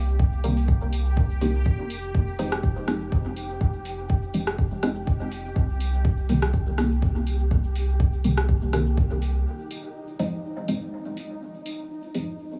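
A lightly swung 4/4 groove at 123 BPM drives this hazy, hypnotic dub techno piece in F minor, where an up-front, tape-warm electronic kick, a deep house kit of hi-hat and rim click bathed in dub echo, and a grainy cabasa sit over a round, pumping sub bass, while muted, detuned chord stabs with phaser and dub echo move through Cm7 and Fm7 and a resonant, bubbling stepped-filter texture with chorus carries on after the kick drops out at about 9.1 seconds and the bass and cabasa at about 9.4 seconds.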